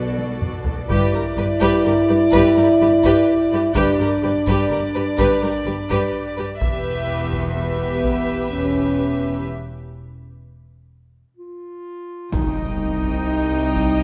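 Cinematic suspense film score at a slow 63 BPM in 3/4, eerie and ominous: a pure, floating violin section carries the melody over a woody, lush second violin line, intimate sul tasto violas, and close, soft-attacked cellos and double basses, while a distant, roomy French horn section holds sustained chords until 9.5 seconds and a taiko ensemble played with hard sticks adds fills; a clear solo clarinet enters up front at 11.4 seconds, and a huge, dark impact lands at 12.3 seconds as the harmony moves from Bm7 through G and Em to a break and then Cm, set in a moderate scoring-stage reverb.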